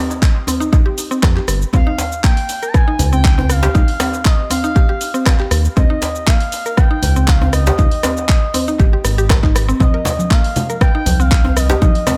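A straight 4/4 afro house groove, warm and driving, is anchored by a punchy, up-front electronic kick and a tape-warm house kit of cabasa, handclaps, hi-hat and rim click, with a deep djembe with metal rattles and analog delay, while a woody, bright mallet-like synth pluck spins chorused, pumping arpeggios through dub echo over a round, dark analog bass; a smooth, mellow synth lead with vibrato and cassette-tape colour sings high from 1.7 s, and ringing congas join at 9.8 s in this dry, echo-heavy fragment cut from a longer piece.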